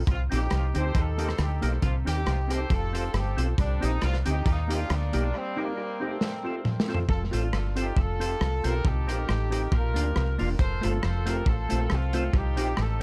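A dark, clean hollow-body jazz guitar and a round, foam-muted fingered bass open this energetic, driving ska excerpt with a light swing, soon joined by a gritty, saturated breakbeat kit up front, a distant, roomy horn section carrying the melody with light vibrato, and a fat, percussive tonewheel organ whose stabs sit in the background with key click, chorus vibrato and a slow rotary speaker. Tape echo colours the guitar, horns, drums and organ, and a light reverb surrounds the band as the harmony cycles through Cm, Eb and F. A break arrives at 5.3 seconds, with a drum fill from 6.2 to 7.1 seconds leading into a second section that moves through Cm, Bb and F.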